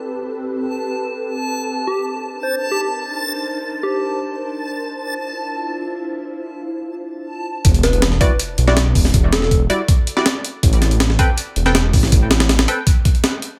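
A straight 4/4 drum and bass groove at 161 BPM, steeped in jungle, takes hold at 7.6 seconds, when a compressed, gritty breakbeat kit slams in up front with a thumpy kick, high-tuned snare and hi-hat that sound sampled and re-recorded in a small room. Before that, the opening in E phrygian floats on an ethereal, airy pad of detuned sawtooth and triangle voices with slow attack, ensemble chorus and its own reverb, carrying chords from Am9 through Cm9 and Dm9. Above it hangs a reversed, granular backwards texture, dreamy and bright, while a soft struck synth lead with a round, vintage FM character and a warbling tremolo enters at 1.9 seconds and trails dub echo. At the drop, a deep, rumbling detuned saw bass arrives with saturated, beating weight alongside a very quiet electronic sub drop, and the lead returns briefly over an Em9 chord. Muted, filter-plucked dub chord stabs with chorus and echo punctuate the passage as the harmony settles on A5, giving this raw, dark fragment of a longer piece a dry, close feel.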